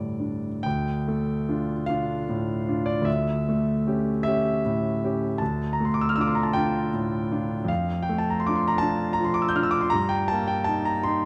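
A romantic classical nocturne for solo piano in D minor, this short excerpt drifts at a slow, rubato 6/8 pulse of roughly 39-54 BPM with a wistful, melancholic mood. The grand piano sounds clear, intimate and up front, with its action noise audible, ranging from D2 up to G6 as the harmony moves from D minor through A7 over a D bass and back, then toward E-flat over G near 9.9 seconds. A moderate concert hall reverb of 2.0 seconds wraps the instrument in a dark, warm production.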